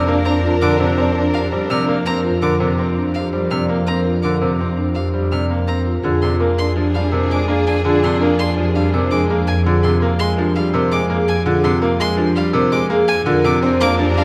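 Meditative and hypnotic, this excerpt of minimalist classical pattern music moves at 166 BPM in 5/4, with a bright, brilliant grand piano and a bowed double bass section up front over a vast, echoing reverb. Soft-mallet marimba and a rich solo violin spin arpeggios while a metallic, ringing vibraphone with fast motor vibrato carries the airy melody in the background. A vintage-toned French horn and a lush, distant string section appear together in brief spans from 0.0, 6.0 and 13.3 seconds, shading the harmony as it shifts from Bbadd9/F to Fm69 and back.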